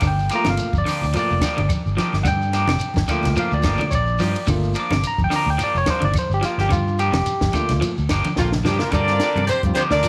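A swung sixteenth-note afrobeat groove in 4/4 drives this defiant excerpt, built on a dry cocktail drum kit with a high-tuned snare and dark cymbals, a round, punchy fingered bass, and soft congas, woody claves and grainy shekere sitting deep in the mix. A barky tine electric piano stands up front and solos over a Gm7, while a clean guitar picks arpeggios in the background and a twangy, slightly broken-up guitar adds stabs, both bathed in spring reverb, before a drum fill arrives at 8.1 seconds. At 8.4 seconds a tight, clear horn section takes the melody, joined by a scooped-note trumpet and a distant, raspy baritone saxophone.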